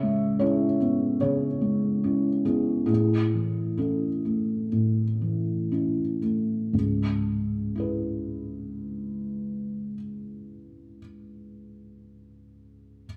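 A felt-muted upright piano plays alone from the first moment to 13.1 seconds, its dark, intimate tone softened by thick felt and accompanied by audible action noise. This short excerpt of neoclassical minimalist piano in C# minor feels reflective and melancholic. It moves with a rubato pulse in 4/4, somewhere between 58 and 78 BPM, and the playing slows through the opening 6.7 seconds. The harmony opens on C#m7, shifts to A at 2.9 seconds, and returns to C#m7 at 6.7 seconds as a new section begins. The piano spans C#2 to E5 and sits close to the ear, while a wet spring reverb with a 1.3-second tail gives the sense of hearing it from further back in the room.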